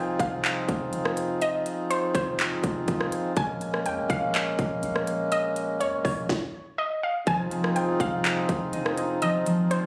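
Atmospheric cloud-rap hip hop in F minor, this spacious, hazy excerpt moves at 123 BPM in 4/4 with a half-time feel. A reedy, nasal hand-pumped harmonium sits up front with sustained chords that breathe under sidechain pumping, moving from Fm7 to Bbm7. Over it, a warbling, lo-fi sawtooth pluck with a dusty noise layer carries the melody through chorus, low-pass filtering and delay. Beneath, a deep, round 808-style bass keeps a dark, sine-like low end, while an electronic trap kit enters at 0.2 seconds, up front with a hard-clipped kick, sharp snare, crisp hats, handclaps and rim clicks. After a stop from 6.3 seconds, a ringing acoustic concert harp joins at 7.3 seconds with filtered, delayed arpeggios as the chords return to Fm7. The excerpt has a light reverb and was recorded on a phone in the room.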